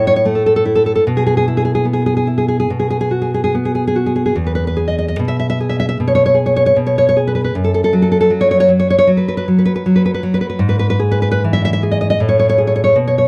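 A dry, close 1970s-style studio sound with light reverb frames this sunny, tender romantic excerpt for solo classical guitar, where a full-bodied, up-front nylon-string guitar, fingerpicked in a free rubato across E2 to E5 and touched with slapback echo, moves from an opening A5 through a chordless passage at 7.5 seconds before settling on Amaj7 at 12.2 seconds.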